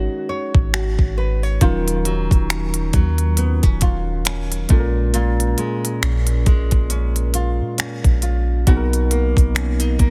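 A slow, swung 68 BPM trap pulse of knocking kick, crisp hi-hat and finger snaps enters at 0.5 s, sitting up front beside a deep, round 808-style bass in this sensual, longing contemporary R&B fragment in Eb minor. A full-bodied, fingerpicked nylon-string guitar spins arpeggios through tape echo while muted, felt-like synth keys with chorus and a filter sweep add dark, intimate accompaniment. The dry, dense and heavily limited mix moves from Ab7sus4 through Ebm9 and Bbm7 to a closing Bmaj7 at 8.7 s.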